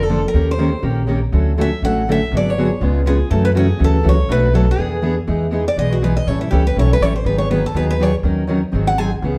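A woody, thumpy upright bass sits up front, driving this charming, playful slice of acoustic string swing (jazz manouche) at a brisk 243 BPM with a swung feel. A bright, boxy parlour guitar carries the melody over a full-bodied dreadnought accompaniment, while a second picked dreadnought sits in the background. At 5.3 s the music settles into E major as a steel-string guitar solo runs through 9.4 s, all heard from further back in a room with a wet studio reverb.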